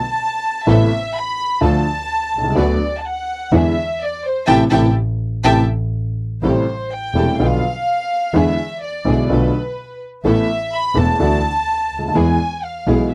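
A rubato 4/4 pulse around 126 BPM carries this nostalgic, elegant tango fragment in A minor, cut from a longer piece. A bowed violin section opens alone at 0.0 seconds, playing sul tasto with a soft attack, and its pure, floating tone and smooth top sit up front as it takes the solo line across both passes of the same section. At 0.7 seconds the others arrive together: an intimate upright piano with a woody, slightly detuned sound and audible action noise, a single bowed double bass with a nasal, earthy tone and light vibrato, and a rich string section placing soft, sul tasto stabs in the background. The full band lands a shared accent at 4.5 seconds. The harmony moves through Amadd9, Dm, E7, Bdim and Bm7b5, with suspended and added-ninth colours, before resting on E. The sound is dry and close, like a 1970s studio recording with little reverb.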